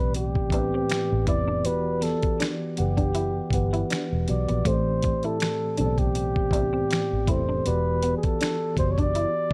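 A breathy, dark flugelhorn opens this late-night neo-soul and R&B fragment, singing a smooth-topped, vibrato-laced jazz melody up front alongside a mellow tine electric piano that glows through its built-in speakers. A dusty, sampler-style drum kit joins at 0.1 seconds with finger snaps, hi-hat, a thumpy kick and a fat, gritty snare, compressed and sitting close in the mix. Beneath it, a vintage foam-muted fingered electric bass adds round, amped low end, while a clean semi-hollow electric guitar, softened by ensemble chorus, traces a hollow-bodied second line in the background from 0.2 seconds. The unhurried, lightly swung groove moves between Am11 and Em9, giving the introspective mood a suspended, searching quality. The dry, close sound recalls a 1970s studio, touched with a little digital ambience.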